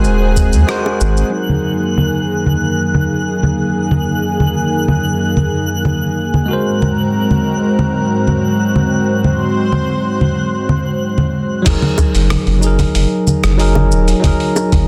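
A dense, heavily limited modern mix with light digital ambience and a faint mains hum opens this blissful, sunny sunset chillout excerpt at 93 BPM in Gb lydian. A bell-like tine electric piano and a lush, detuned sawtooth pad with chorus and shimmer reverb carry Ab9 and Gb69 chords, while a twinkling granular texture sparkles high above, a gritty, dusty soul sampler-style kit ticks along on cabasa, congas, hi-hat, rim click and crash, and a filter sweeps across the drums and pad. The pad and texture fall away around 11.7 seconds. A round, up-front analog bass and a deep, tape-warm electronic kick, both heard briefly at the start, then return beneath the electric piano and kit, and tight, high-tuned bongos in the background rejoin shortly after.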